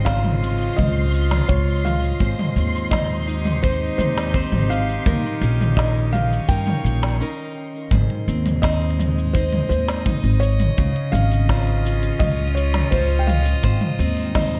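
Folktronica at 84 BPM in Ab major, warm and delicate, this short cut opens with a felt-muted upright piano carrying a dark, intimate melody with audible action noise and a diffuse ambient delay. A sul tasto string quartet floats beneath it, while a picked steel-string acoustic guitar plays arpeggios roughened by 12-bit sampler grit and a low-pass filter. An up-front pizzicato upright bass and a punchy kick anchor an organic electronic kit of woody snare, crisp hats, shaker and toms, as a twinkling granular shimmer glints in the background until a brief break at 7.2 seconds.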